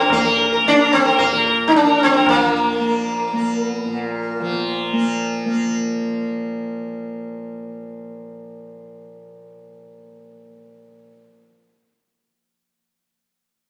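Moving in a straight 7/4 at 111 BPM, this serene, meditative Hindustani classical excerpt, tuned to A4 = 436 Hz, sets a plectrum-plucked sitar up front, buzzing with sympathetic strings and a slapback echo, over a softly plucked, shimmering tanpura drone. A low-tuned, close tabla with a short ring sits in the background and stops at 2.5 seconds, the sitar carries the melody until 6.1 seconds, and the tanpura drones on alone until 11.4 seconds. The sound is that of a phone recording in a small, reverberant room, with club reverb and compression.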